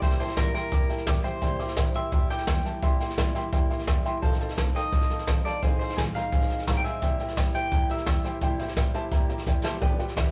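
A rough rehearsal-room recording with warm saturation and a moderate stone-room reverb gives this short rockabilly cut from a longer piece a retro, rowdy character at 172 BPM in 4/4, in C mixolydian. Up front, a brushed jazz kit drives the straight feel with a boomy kick, a medium-tuned snare and hi-hat, and a drum fill at 9.5 s. A bright, twangy electric guitar through a small old amp carries the picked melody with a slightly broken-up, lo-fi edge until 8.9 s. Beneath it, a dark, mellow upright piano and a boxy, picked old ladder-braced acoustic guitar fill out the accompaniment, while a very quiet, thumpy pizzicato upright bass with gut strings adds a woody bottom. The harmony moves from C7 to F7 and Fm7 before returning to C7.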